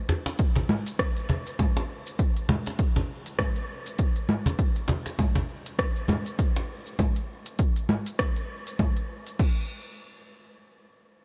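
A 100 BPM downtempo groove in 4/4 with a gently swung sixteenth-note feel sets a mystical, meditative mood in this short cut from a longer piece, opening with a woody acoustic cajon whose faint snares sit up front in a small-room sound until 6.7 seconds. An organic electronic kit of congas, crisp hi-hat, rim click, shaker and crash cymbal joins almost at once. A punchy, layered electronic kick with an overdriven edge drives the pattern until about 9.5 seconds, all under a light reverb.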